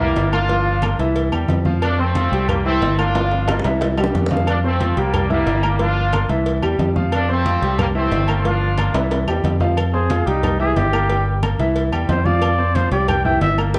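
A dark, roomy production with a big studio reverb frames this sunny, joyful salsa excerpt at 181 BPM, where a bright, punchy vintage trumpet section with vibrato leads until 9.0 seconds over clear grand piano, a round fingered electric bass up front, soft low-tuned congas, tight high-tuned cowbell and bongos, ringing timbales and agogo bells, and woody claves, with drum fills before a mellow jazz-style solo trumpet with scooped notes takes over from 9.9 seconds across a Gm7, C, F and C7 cycle.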